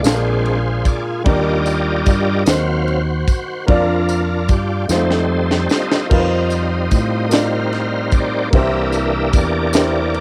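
In a slow, straight 6/8 at 50 BPM, this reverent, hopeful gospel excerpt in Bb major features a bright, shouting tonewheel organ solo, lightly overdriven with key click, slow rotary speaker and chorus vibrato, over a natural-sounding baby grand piano, a round fingered electric bass, a jingly tambourine in the background and a crisp, up-front fusion drum kit with punchy kick, high-tuned snare and a fill from 4.9 to 6.1 seconds, while chords move from Bb7 through Ebm6 to F7sus4 and C7 with a home-cassette tape grain.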